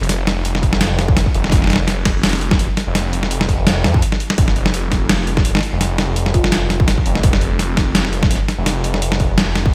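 A swirling, thick phased saw bass and a gritty, pitched-down sampler-style kit of hi-hat and snare soaked in gated reverb open this heavy, dark half-time drum and bass, with a distorted electronic kick joining at 0.6 s, a brief break at 4.0 s, and a dry, woody marimba with digital delay surfacing in the background at 6.3 s, all set in a bright 1980s-style digital production with light reverb.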